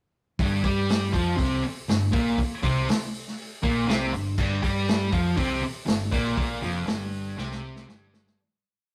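Raw and rowdy, this short garage rock piece is built on a dark, double-tracked fuzz guitar octave riff over an Fsus24 chord, doubled by a round, punchy hollow-body short-scale fingered electric bass playing a quarter-note figure. A vintage drum kit sits up front with a medium-tuned snare, punchy kick, crash and hi-hat, a rolled-off top and a big rock groove. Everything sits in a rough rehearsal-room sound with a stone room's reverb and saturation, and the piece fades out from 6.4 seconds as a drum fill arrives at 7.4 seconds.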